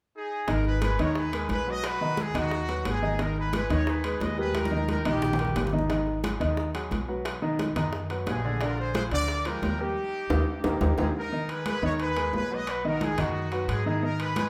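Danceable and driving, this salsa excerpt puts a bright, tight trumpet section with light vibrato up front on the melody beside a clear, present grand piano, while a woody, thumpy pizzicato upright bass holds the low end, ringing congas and metal-shell timbales keep the percussion going, very quiet high-tuned bongos drop out at 11.1 s, and drum fills land at 4.5 and 10.5 s, all heard as a band playing live together in a moderately reverberant large studio.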